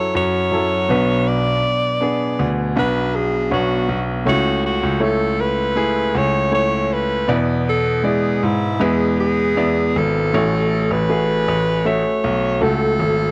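Pop ballad excerpt in A major at a steady 79 BPM, heartfelt and hopeful, where a clear alto saxophone with light vibrato sings the up-front melody over a polished baby grand piano accompaniment and a brilliant, intimate grand piano bass line with audible action noise, moving from F#m7 through Bmadd9, A/C# and E7 before a new section opens on A6 at 10.3 seconds, in a dry, close 1970s-style studio sound with light reverb, tuned slightly low to A4 = 438 Hz.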